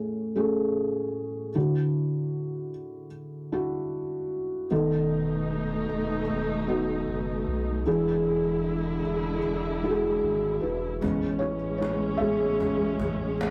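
A rough rehearsal-room recording with tube saturation and a modest small-room reverb frames this heartfelt, hopeful pop ballad excerpt. A soft, dark, felt-muted upright piano sits intimately up front, joined at 4.7 seconds by a bowed studio string section with expressive vibrato and portamento and a deep, round sub bass. At 11.0 seconds the piano takes a solo as a woody, distant cajon with faint snares and hard hands enters.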